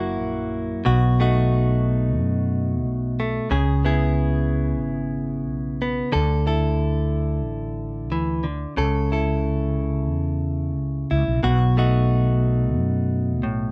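In a straight, unhurried 4/4, this reflective acoustic folk-pop ballad unfolds as a short passage taken from a longer piece. A clean electric guitar, recorded direct and compressed, carries the accompaniment with picked notes that sit up front and sound warm. Beneath it, a fretless electric bass plays a dark, round, amped line in its low register, mellow from the first second to the last. The two parts play together throughout the 13.7 seconds, drifting through a gentle progression that opens on a brief Gb7 and moves from B7 to C#m7, Dsus2 and A/C# before returning to B7. A light reverb gives the recording an intimate sense of space, keeping the mood quiet and inward.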